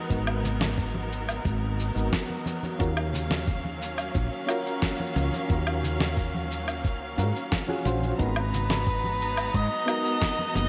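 A growly, woody fretless bass with analog chorus sits up front in this smooth, wistful sunset chillout excerpt, over gentle electric-piano-like synth keys with chorus, tremolo, delay and a filter sweep, rich bowed chamber strings holding sustained chords, a thumpy overdriven electronic kick, a gritty, fat snare with cabasa and woodblock, and low-tuned congas ringing in the background, and then a mellow soprano saxophone with vibrato joins at 8.2 s, the whole set in lush hall reverb with bright 1980s-style digital production.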